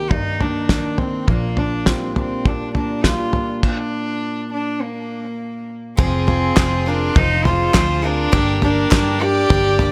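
A straight, steady four-beat pulse drives this indie folk excerpt, whose arrangement builds in a stirring, yearning mood. Up front, a cloth-damped drum kit thuds with a fat snare, tight kick, dark cymbals and toms, while a round, foam-muted electric bass holds the low end and a bowed solo cello carries the melody with a soft, floating sul tasto tone and a digital delay. A fingerpicked dreadnought acoustic guitar, full-bodied with audible finger squeak, accompanies until a stop that falls between 3.6 and 6.0 seconds. At 6.0 seconds, a brighter picked acoustic guitar takes over the accompaniment as the chords move from minor sevenths into plainer minor harmony. A reedy, gut-string fiddle adds a distant second line, and a very quiet chamber string section lays down smooth, earthy sustained chords with light vibrato. From 6.6 seconds, a crisp, vintage-sounding group handclap sits in the background, all within a small room ambience.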